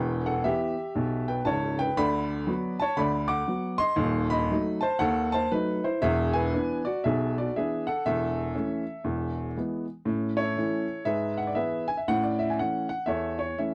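A clear, woody upright piano plays alone from the start in a swinging, exuberant stride jazz passage cut from a longer piece, its lines spanning from the deep bass up into the high treble. The harmony moves through diminished and dominant colours before settling into a new section at 10.0 s that resolves home to the tonic. The sound is intimate and up front, with the piano's action noise audible in a dry, close 1970s-style studio recording carrying moderate booth ambience.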